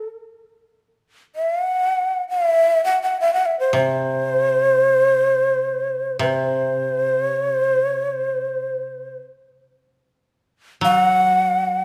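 Set in a moderate recital-hall reverb, this solitary, austere fragment of Japanese traditional chamber music puts a breathy, mellow, close-miked shakuhachi up front, singing an expressive melody with soft attacks and vibrato, while a quieter, dry, woody koto plucked with fingerpicks enters at 3.7 seconds to provide a low accompaniment.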